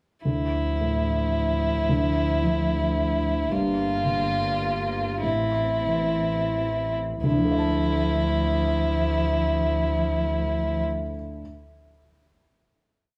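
A small room's light reverb surrounds this short, complete neoclassical piece in D minor and 3/4, its rubato pulse moving between 84 and 114 BPM and slowing from 2.7 to 7.2 seconds, with a longing, reflective mood. A felt-muted upright piano, dark and intimate with audible action noise, lays down sparse bass and held chords beneath a focused, up-front violin melody with vibrato, while a rich cello with portamento sings a soft-attacked second line in the background and a smooth, even double bass holds a low bowed drone. The harmony moves through Dmadd9, Gm7 and Am before returning to Dmadd9 at 7.2 seconds for the final chord, where the piano rings on alone until 11.4 seconds.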